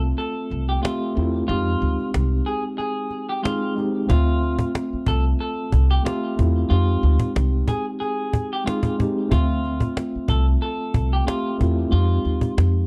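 A clean, picked semi-hollow guitar melody opens over a mellow tine electric piano with a cassette-tape tint and a growly, thumpy pizzicato upright bass, and close, dry cajon with hard hands and faint snares joins at 0.2 seconds. This tough, dark boom-bap hip-hop excerpt sways with a light swing, alternating between a rootless Dm9 and an Fm9. The bass and cajon sit up front in a dark, warm production with light reverb, while the guitar carries a touch of digital delay.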